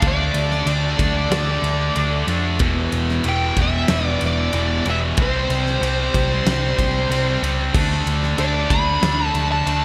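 Driving and menacing, this short hard rock excerpt in a straight 4/4 pairs a dark, high-gain lead guitar melody soaked in distortion and digital delay with a bright, double-tracked overdriven riff guitar, a round, punchy hollow-body bass up front, and a big-room drum kit with a fat snare, punchy kick, crash and ride, all playing throughout the 9.8 seconds over Dm, E5, C5 and D5 chords in a lush hall with bright 1980s-style digital production.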